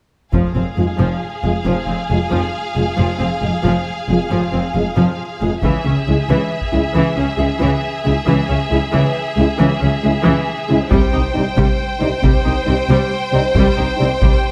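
Dark and dramatic, this epic orchestral film-score build-up in F minor moves at 91 BPM in a straight 12/8, as lush bowed violins carry a smooth vibrato melody over an expressive second violin line, rich violas, a focused close cello section and distant double basses, while mellow, roomy French horns sustain chords from 0.8 s and a close, dry taiko ensemble strikes with heavy sticks in bursts, returning at 5.6 s and 10.9 s as the harmony shifts from Fm to Dbm to Cm in light reverb.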